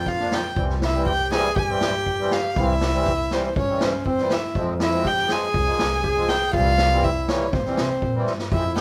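A straight 4/4 pulse drives this soulful, festive klezmer excerpt, taken from a longer piece. A single bowed violin carries the melody up front, intimate and close, with a soft attack, light vibrato and an airy sul tasto tone. Beneath it, a clarinet in classical style adds a warm second line, while a bowed double bass grounds the harmony with a biting, nasal, earthy sound. The accordion's reedy musette tuning gives a shimmering accompaniment, entering at 0.2 seconds. An acoustic street-band drum kit, heard from 0.1 seconds, plays kick and a medium-tuned snare with a boomy low end and rolled-off top, then adds a fill at 8.3 seconds. Moderate studio reverb surrounds the group as the chords move from Bb through C and F minor.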